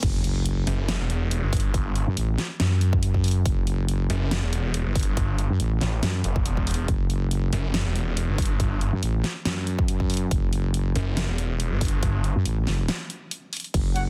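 Heavy wobble dubstep at 140 BPM in a half-time 4/4 with a light swing, this menacing, aggressive excerpt in F# phrygian opens straight into a drop, with a very quiet riser and sub drop marking the impact while a saturated, chorused wobble bass and a punchy layered electronic kick drive forward, joined at 0.7 seconds by a snarling, detuned saw bass with a moving notch and heavy distortion. A big-room dance drum kit with a huge snare, hi-hat, ride and crash sits behind the basses, all in a dense, heavily limited modern master with digital ambience. After a brief break from 12.9 to 13.7 seconds, a very quiet lush unison pad entering at 13.9 seconds and a mellow, tight brass stab on F# at 14.0 seconds close the cut.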